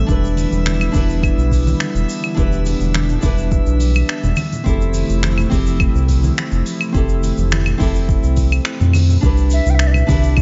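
A straight 4/4 groove at 105 BPM, built on a deep electronic kick, a brushed vintage kit with claves, finger snaps, hi-hat and shaker, and soft-handed congas in the background, carries this sunny sunset chillout excerpt: a round, dark analog bass sits up front beneath fingerpicked nylon-string guitar with delay, an airy, breathy pad with chorus, and a faint glassy texture of drifting overtones over Em7 and Fmaj7, until a mellow, distant wooden flute with vibrato enters at 9.5 seconds on a Cmaj9 chord, all heard in a snug small room with a dull top end.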